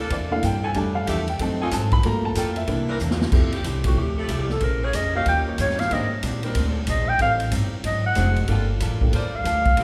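Big band swing jazz at 186 BPM in F major with a joyful, swinging feel: a smooth vintage upright piano leads the opening until a drum fill at 3.0 seconds, and a breathy, whispered clarinet with light vibrato and scooped notes enters up front at 3.9 seconds, all over growly pizzicato upright bass, a punchy up-front drum kit with crash, hi-hat, ride and snare, a dark, clean hollow-body archtop guitar in the background, and tight, edgy saxophone-section chords, the whole ensemble set in a wet recital-hall reverb.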